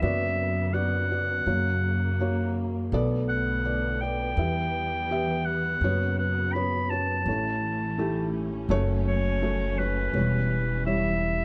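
A bright, vintage-toned clarinet sings a soft-edged classical-style solo up front in this heartbroken, melancholic acoustic folk-pop ballad excerpt, over an intimate felt-muted upright piano with audible action noise, a woody pizzicato upright bass, and a distant bowed string section adding sustained chords with vibrato and portamento, all captured dry and detailed with close microphones.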